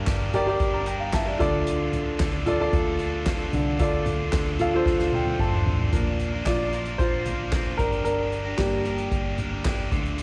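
A lightly reverberant, small-room home cassette recording catches a dramatic, earnest piano-driven pop passage cut from a longer piece, where an up-front grand piano carries the accompaniment and fills before taking a solo at 5.9 s, joined by a bright, overdriven picked electric guitar riff, a dark, round, foam-muted fingered bass sitting in the background, and a soft-mallet acoustic drum kit with boomy kick, fat snare, hi-hat, toms and handclaps that plays a fill at 4.9 s, all over chords moving from Gm and Dm to Bb.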